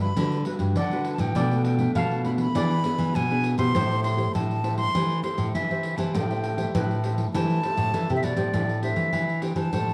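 A breathy silver concert flute carries the melody up front, its close-miked, straight tone tongued and expressive as it moves between D5 and C6 in this yearning, nostalgic samba-and-choro excerpt in A minor at 100 BPM. Beneath it, a fingerpicked nylon-string guitar supplies classical accompaniment with fresh strings and audible finger squeak, while a second nylon-string guitar, the loudest part, holds down the bass between G2 and E3. A steel pan played with medium rubber sticks adds a shimmering, band-limited second line with a vintage character until 8.5 seconds, where the music shifts into a new section. A jingly pandeiro, played with soft hands, enters at 0.2 seconds and sits distant in a large room. The harmony moves from Gmaj7 through Bm7b5 and E7 to Am7, and a moderate studio reverb frames the dark, warm production.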